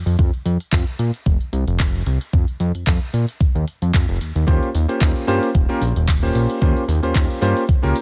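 Swung sixteenths in 4/4 drive this sensual, cosmic nu-disco fragment, where a thumpy, tape-colored electronic kick sits up front beside a crisp, layered pop kit of handclaps and hi-hats set in a small room. A fat, detuned sawtooth analog bass with tube saturation and a filter sweep holds long, thick notes, moving from an F5 to an Eb13 chord at 4.2 seconds. At 4.5 seconds a vintage electric grand piano enters, clangy in its low end, with long sustain, sidechain pumping and digital delay, all in a dry, close mix.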